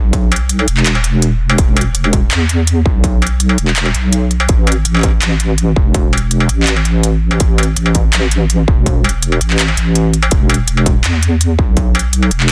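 Dark and cinematic, this half-time drum and bass cut from a longer piece rests on a deep, mellow wobble bass with a square-and-sine, detuned character, compressed and thickened with chorus, sustaining from the start to 12.5 seconds. Up front beside it, a distorted, overdriven electronic kick and an industrial kit of crisp hats, handclaps, shaker and struck metal carry overdrive and studio reverb. The dense, heavily limited modern master sits in a digital ambience.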